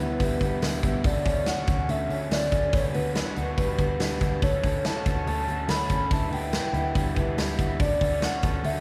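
Youthful and nostalgic, this fragment of jangly indie pop in D major moves at 142 BPM in a straight 4/4, with a hollow, woody clarinet-like synth lead singing a mellow melody through chorus and phaser over a crunchy overdriven guitar, slightly broken-up arpeggios from an electric guitar through a small old amp tucked in the background, a dark, round muted bass holding D2, and a big, up-front rock drum kit with a punchy kick arriving at 0.2 s, all set in the moderate reverb of a church or concert hall with a layer of vinyl crackle as the chords drift between Em7/D, Dmaj7 and Gmaj7/D.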